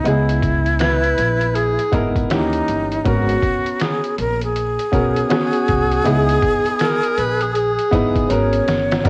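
A breathy, up-front concert flute carries the melody with vibrato and lifted highs in this mellow, nocturnal jazz-hop excerpt in G# minor at 80 BPM, swung on the 16ths, while a distant, roomy tenor saxophone adds a second line with scooped notes from 0.8 seconds. A woody upright piano with short sustain moves through chords such as C#m9, D#7b9 and G#m11, and a pizzicato upright bass with steel strings sits up front underneath. The pitched-down, compressed sampler-style drums bring a thumpy kick and 12-bit grit, ending with a fill at 8.3 seconds, and cassette tape softens the flute, piano, saxophone and drums inside spring reverb and small-room ambience.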